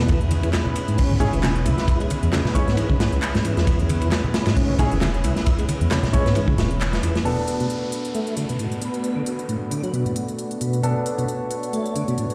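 Funky, raw breakbeat, cut from a longer piece, where a crunchy, gritty breakbeat kit with a punchy kick and dark cymbals sits up front beside a deep, rumbling detuned saw bass, while a crisp-hatted house kit with handclaps and congas tucked in the background fill out the groove. A lightly overdriven tonewheel organ riff with slow rotary swirl, sampler grit and digital delay runs throughout over a lush, airy unison pad, and polished grand piano stabs join at 1.2 seconds. After a band accent, the breakbeat kit and bass drop out at 7.2 seconds, while the organ, piano and house kit carry on, joined by a filter sweep on the pad and an electronic downlifter from 7.3 seconds, all set in a large studio reverb.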